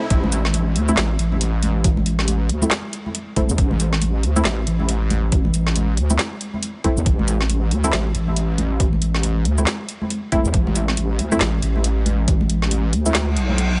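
Brooding and cavernous, this deep dubstep excerpt at 138 BPM in A minor rides a half-time swing on a heavy, detuned wobble bass held up front with tube saturation, an overdriven, thumpy kick and a garage kit of woody snare, metallic hats, handclaps and shaker, while muted sawtooth dub chord stabs with dub echo sound until 13.2 seconds, acoustic congas sit in the background, and an electronic riser and reverse cymbal effect flickers at the very start and returns as a reverse cymbal at 13.3 seconds.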